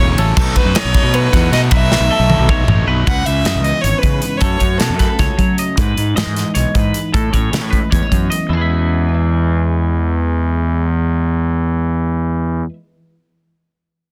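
The recording is dense and heavily limited, with light reverb and an up-front, polished drum kit that sounds airy and small-roomed, with a punchy kick and soft clipping on the snare. This bright, intricate math rock and midwest emo piece, cut from a longer work, moves at 309 BPM in 7/8 with a straight feel in E major. A clear, smooth fiddle carries the bowed melody with light vibrato through plate reverb and digital delay until 5.4 seconds. Beneath it, a twangy clean electric guitar picks arpeggios with subtle chorus, while a double-tracked overdriven guitar plays a crunchy, picked riff in the background. At 3.1 seconds, after a drum fill, that riff gives way to a bright, twangy twelve-string electric guitar bathed in spring and plate reverb. Throughout, a growly fuzz bass sits up front, and the drums drop out at 8.4 seconds as the harmony passes through lush chords like C#m9, Amaj7 and E69.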